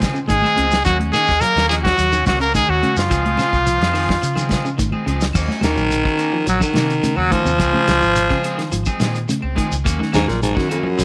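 A bright, punchy trumpet leads this defiant, funky afrobeat cut from 0.3 seconds, shadowed by an edgy tenor saxophone in the background, before a raspy, gritty baritone saxophone takes over the melody as a solo at 5.6 seconds. Underneath, two slightly broken-up, twangy electric guitars play, one picking arpeggios with slapback echo and the other stabs, while a round, foam-muted electric bass and a dry, damped 70s drum kit with dark cymbals anchor the groove. High-tuned congas, a grainy shekere and very quiet woody claves fill out the percussion over alternating Dbmaj7 and Ebm7 chords in a small, lightly reverberant room.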